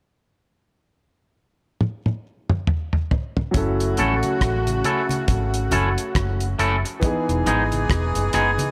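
A cloth-damped, thuddy drum kit opens this excerpt from a longer lovers rock reggae piece with a fill at 1.8 seconds, its tight kick and rolled-off top sitting up front over a lazy swung 16th feel. At 3.5 seconds the band settles onto F#m7 before moving to Emaj7: a round, foam-muted vintage bass, a clear concert grand piano and a vibrato-laced horn section, both touched with tape echo, plus very quiet low-tuned congas. A twangy, clean electric guitar adds stabs from 4.0 seconds, giving the smooth, bittersweet groove a light glint under gentle reverb.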